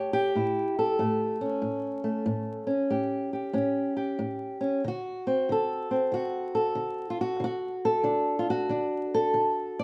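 A fingerpicked old ladder-braced acoustic guitar, dark and boxy and set up front, carries this soulful, gritty acoustic country blues on its own at a swung 93 BPM in A mixolydian, moving from A7 to D7 at 4.8 seconds in a short live-room excerpt touched by moderate studio reverb and vinyl crackle.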